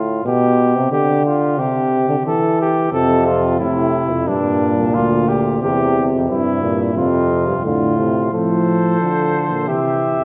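A straight 4/4 pulse at 89 BPM carries this stately, elegant classical brass canzona fragment in F major, where a soft-attacked, close-miked flugelhorn and an up-front, mellow euphonium open together, a bass trombone with light vibrato joins at 2.9 seconds, and a distant, roomy trumpet takes the melody from 8.3 seconds, all bathed in the long, wet reverb of a concert hall.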